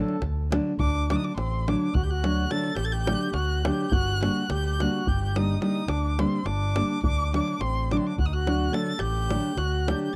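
Restless and fiery, this short slice of Balkan wedding-band folk drives along at 212 BPM in a straight 11/8, set in D phrygian dominant. A single bowed violin carries the melody high in its range, its nasal, expressive tone shaped by vibrato and portamento with a smooth top end. Beneath it, a mellow accordion plays a reedy, mid-forward second line with slow beating in its tone chamber, while a nylon-string guitar fingerpicks a deep classical accompaniment, finger squeaks audible. The overdriven fingered electric bass sits up front, punchy and amped, and the davul adds deep, close, dry percussion. The harmony moves from D to Gm at 3.9 seconds and back to D at 7.0 seconds, all captured in a dry, close 1970s-style studio sound with little reverb.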